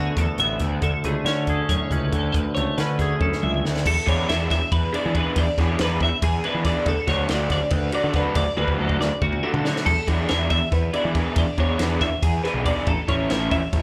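Set in a lopsided 7/8 with a straight feel, this playful, intricate piece of math rock and midwest emo moves at a brisk clip, and it is cut from a longer piece. A compact cocktail drum kit enters almost at once, dry and natural with dark cymbals, a high-tuned snare and a punchy kick, and it plays fills around 3.2 seconds and again near 9 seconds. Over it, a bright, compressed twelve-string electric guitar picks shimmering arpeggios high in its range, treated with analog chorus, digital delay and slapback echo. A fuzzed, growly picked bass sits up front with overdrive. For the opening passage, a clean, fingered twangy electric guitar adds up-front accompaniment with slapback echo, stopping at 3.9 seconds. At 4.1 seconds a raw, lo-fi, double-tracked garage guitar takes over with an overdriven riff, and the whole band is heard as a live gig through the venue's PA, with a light club reverb.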